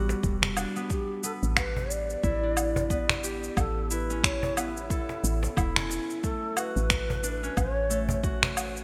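A mellow, airy wooden flute carries the melody with vibrato and a crisp chiff, roughened by vintage sampler grit and delay, over ringing fingerpicked concert harp arpeggios and a round, dark FM bass, while up-front electronic cabasa, finger snaps and woodblock with gated reverb, a soft-handed cajon and a deep, layered electronic kick add a lightly swung pulse, set in a lush hall and bright 1980s-style digital production that gives this organic downtempo piece a peaceful, earthy feel.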